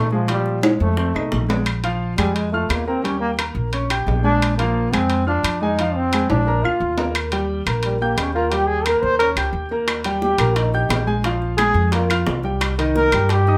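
In a moderately reverberant studio sound, this lively, sunny Afro-Cuban jazz passage, cut from a longer piece, features a clear, scooping trombone with light vibrato and plate reverb that takes a solo from 1.7 s over a warm grand piano with audible action noise, an up-front woody pizzicato upright bass, ringing metal-shell timbales, dry claves in the background, and round, low-tuned bongos that drop out at 1.7 s and return at 9.9 s.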